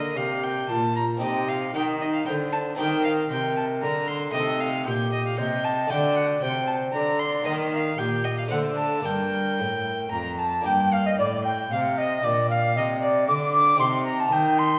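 In a straight 3/4 at 115 BPM, this serene, radiant excerpt of a baroque-style sonata movement settles into G minor from 4.3 seconds, as a close, reedy gut-string violin carries the melody above a pure, wooden baroque flute on the second line, while an up-front cello with light vibrato holds the bass and a full, plucked harpsichord with two sets of strings fills in the continuo, all bathed in a recital hall's reverb with a faint mains hum beneath.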